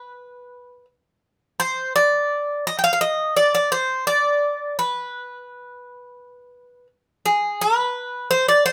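In a straight 4/4 at 85 BPM, this short Greek folk cut has a cool, bittersweet mood, carried by a solo acoustic bouzouki from 0.0 to 8.7 s. The picked double strings sound bright and metallic, with some octave-doubled courses, as the line moves between Ab4 and G5. The instrument sits up front in a small room with moderate reverb.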